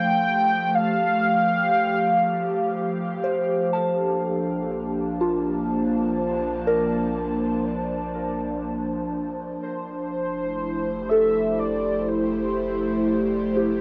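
Peaceful and warm, this short ambient passage in a steady three-beat metre is cut from a longer piece. A velvety synth lead, smooth and full-bodied with vibrato, chorus, plate reverb and tape echo, carries the melody up front. Beneath it, a breathy, airy pad holds sustained chords with a slow attack and long release. A soft, pure FM bell adds decaying arpeggios shaded by phaser and echo. At 3.7 seconds a deep, round sub bass with transformer saturation fades in very low beneath the rest, as the lead also fades in, and the harmony moves from Fmaj9 to Bbmaj9, returning to Fmaj9 at 9.6 seconds. Cassette tape colours the pad and bell, and the whole piece sits in a small, wet booth ambience with a homemade cassette feel.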